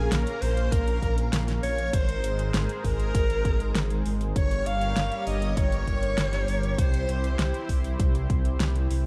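A straight 4/4 groove at 99 BPM drives this short, cinematic synthwave passage: a pop drum kit with a fat snare and metallic hats is joined at 0.7 seconds by a punchy, tape-warm electronic kick, both in a small room reverb. Beneath them, a deep, rumbling detuned saw bass sits up front, while a shimmering, chorused pulse-width pad with sidechain pumping holds sustained chords through Bbm, Abadd9, Gdim and C. On top, a smooth alto saxophone with classical vibrato carries the melody through digital delay, shadowed by a bright vintage string-machine violin line in ensemble chorus; both stop near 7.4 seconds in a dark, lightly reverberant mix.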